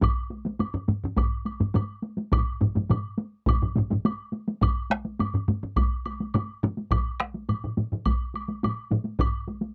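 From the first beat, a solo taiko drum struck with heavy sticks and layers of taiko ensemble drumming, some heavy and some hard-sticked, sit close and up front alongside a woody woodblock that carries a touch of live room. This driving, powerful Japanese traditional passage moves at a straight 105 BPM in 4/4, and a further taiko ensemble part joins at 2.3 seconds to thicken the pounding. The dry, close 1970s-style studio sound with a moderate booth ambience keeps the drums blunt and immediate across this roughly ten-second cut from a longer piece.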